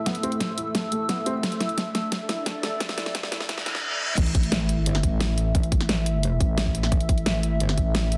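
Two pads open this aggressive, futuristic dark technical drum and bass cut at 175 BPM in 4/4. One is a deep, detuned analog pad holding sustained chords, and the other a warbling, lo-fi tape-like pad with its own built-in reverb; both carry chorus and sidechain pumping. Almost at once a soft, felt-muted upright piano plays arpeggios through a low-pass filter and digital delay, its action noise audible, while the build-up brings a drum fill, a filter sweep and very quiet sound effects of a riser, reverse cymbal and sub drop. The kit sits up front with a huge snare, bright hats and crash cymbal, layered over a tight electronic kick re-recorded in a small room. The drop lands at 4.2 seconds with an impact and a metallic, chorused wobble bass with tube saturation, joined at 5.0 seconds by a thick, growling FM bass on A1. The whole is framed by light reverb and a dense, heavily limited modern master.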